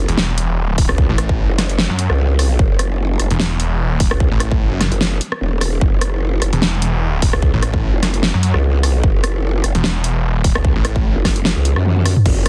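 A dense, heavily limited modern master with digital ambience carries this aggressive, chaotic heavy wobble dubstep excerpt in F# minor at 149 BPM, with a half-time feel and swung 16ths. An impact and a barely audible sub drop open it as a snarling, detuned sawtooth bass with distortion and a moving notch joins a growling, formant-filtered wobble bass with chorus and overdrive, both sitting up front in the low register until the saw bass stops at 11.1 seconds. A big-room electronic kit with a huge, soft-clipped snare, hi-hat, rim click, toms and crash hits hard alongside a punchy kick that enters at 0.8 seconds, and a drum fill arrives at 11.9 seconds.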